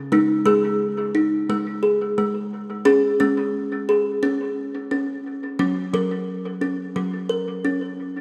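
A solo kalimba sits up front with a woody, hollow thumbnail pluck, carrying this gentle, hypnotic world meditative fragment at 88 BPM in straight 4/4 through G#5, C#5 and F# chords across 8.2 seconds, its short, airy notes trailing dub echoes into a wet plate reverb with a 2.5-second tail, all within an echo-heavy mix captured on cassette tape.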